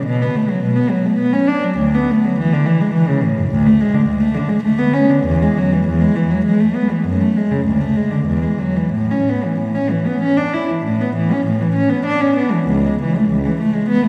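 This classical, baroque-style suite movement for unaccompanied cello moves in a radiant, flowing 3/4, its tempo shifting with rubato between 84 and 108 BPM. A single bowed cello carries the whole passage from 0.0 to 14.1 s, ranging from C#2 up to E4 and settling into A major from 3.5 s. The tone is warm and intimate, with a soft attack, light vibrato and an airy, sul tasto bow that sounds close and up front. A wet concert hall reverb with a 2.2-second decay surrounds the instrument, giving a sense of being heard from further back in the room. A new section begins at 10.9 s, and the passage is cut from a longer piece.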